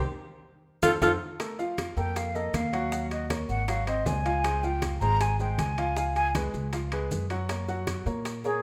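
A moderate large-studio reverb gives this lively, danceable Afro-Cuban jazz excerpt a roomy sheen at a straight 158 BPM in 4/4. It opens on a band accent with a drum fill, and the breathy, subtoned alto saxophone cuts in up front for a brief scooped note between 0.8 and 1.1 seconds. From 1.4 seconds the mellow concert flute takes a solo, tongued with vibrato and rolled-off highs, its tone slightly unsteady. Beneath it, a brilliant, polished upright piano with audible action noise comps through changes from Ebm7 and Ab7 to Dbmaj7, Db7 and Gb, while a woody, thumpy pizzicato upright bass on gut strings sits prominently in the mix. The percussion stays low: tight, high-tuned bongos struck with hard hands, low-tuned congas played with soft hands, grainy maracas, and ringing metal-shell timbales in the background that stop at 8.4 seconds.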